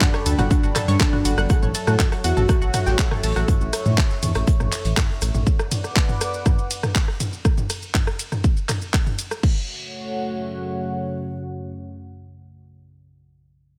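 Dark and hypnotic, this melodic techno passage drives on a punchy, up-front electronic kick and an overdriven deep house kit of claps, hi-hats, rides, shaker and toms, with a very quiet, dry soul kit of snare, hi-hat and shaker beneath until 5.3 s, while a deep, rumbling detuned saw bass pumps against the sidechain, a fat detuned lead and a round, bright pluck arpeggio share the opening 3.5 s, and a moody analog pad and warbling, vintage drone sustain over a faint mains hum through to 12.8 s.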